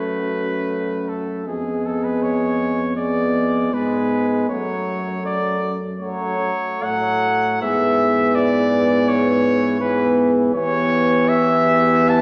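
Heard from further back in a reverberant recital hall with a small-speaker quality, this excerpt from a longer classical brass band piece unfolds as a yearning, elegiac hymn at a rubato 69-84 BPM in 4/4, its harmony opening on F# minor and passing through a diminished chord. A punchy, up-front cornet carries the melody, shadowed by a dark French horn section with light vibrato in the background. A dark euphonium and a brilliant, distant trombone fill out the accompaniment, and a mellow, close-miked tuba anchors the bass with light vibrato.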